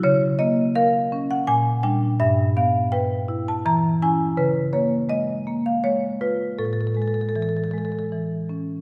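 Heard from further back in a concert hall with a long, wet reverb, this reflective, flowing contemporary classical piece for solo marimba moves at 82 BPM in 3/4 with uneven, rubato beats, its woody, dark rosewood bars struck with medium hard mallets across a range from G2 to A#5 as the harmony passes through C#69, A#6, G6, E6 and C#6 before settling on Amaj7 at 6.6 seconds.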